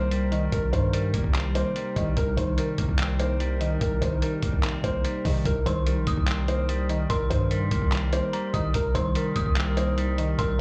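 Hard-hitting and dark, this half-time trap and hip hop cut moves at 146 BPM in C minor, resting on a single Cm7 chord throughout its 10.6 seconds. A lo-fi, sampler-style drum kit sits up front with a muffled, pitched-down, compressed sound, its thumpy kick joined by handclaps and hi-hat, while a long, deep 808-style bass with a sine tone and mellow decay anchors the low end. A dark, boxy concert grand piano carries the melody between Bb4 and Eb5, trailed by tape echo, as a clean, scooped semi-hollow electric guitar adds fingered accompaniment underneath. A hollow, airy pad with a flute-like softness holds sustained chords in the background, thickened by chorus. At 5.7 seconds an eerie, inharmonic FM bell enters high above with a warbling, vintage character, its detuned second line colored by chorus and tape echo. The mix is dry and gritty, with a hardware edge and little reverb, and the passage is cut from a longer piece.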